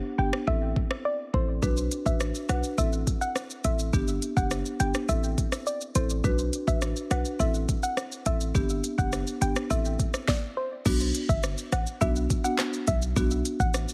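An overdriven, electronic afro-pop drum kit sits up front in this bouncy, tough dancehall excerpt, its knocking kick, sharp snare and smooth hats joined by handclaps, rim clicks, shaker and crash cymbal in a straight 4/4. Beneath it, a hard-hitting 808-style bass lands heavy and punchy, a sine tone with a noise layer that strikes fast and then decays. A woody marimba played with medium mallets on padauk bars supplies dark accompaniment, while a soft, round pluck carries the melody, colored by chorus and digital delay. The piece opens with a break that runs until 1.6 s, then cycles through Am, Bm and G before shifting to a new section on Bm at 10.9 s. The whole mix has a heavily compressed, radio-style sound.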